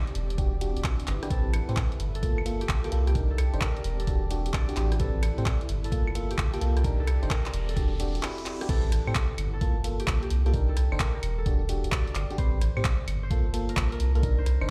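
Heard through a big sound system in a bare, reverberant room, this dry, close mix of bouncy, soulful UK two-step garage moves at 130 BPM in A minor, with a heavy 16th-note swing. It's cut from a longer piece. An up-front electronic kick with a knocking, tape-warm thump anchors the groove, while a punchy analog drum machine, re-recorded in a small room, scatters claves, handclaps, hi-hat, rim clicks and crash cymbal around it. A deep, round, soft dub sub bass with tube saturation sits equally forward. A glassy, bell-like FM electric piano with warbling chorus and digital delay plays stabs over a cycle of minor seventh chords. A bright, ringing Celtic harp carries the fingerpicked melody through its own echoes. In the background, a cloudy granular pad with a slow attack and sidechain pumping drifts from the very start until 8.7 seconds, and a faint electronic riser climbs from 6.8 seconds into a short break before the drop lands at 8.7 seconds.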